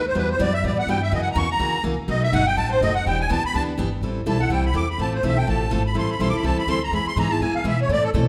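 A reedy, shimmering musette accordion solos up front through this bittersweet, fiery slice of acoustic string swing, carried by a thumpy, dark upright bass on gut strings and a picked steel-string guitar, all set in a wet recital-hall reverb as the harmony moves from E minor to A minor at 4.0 seconds.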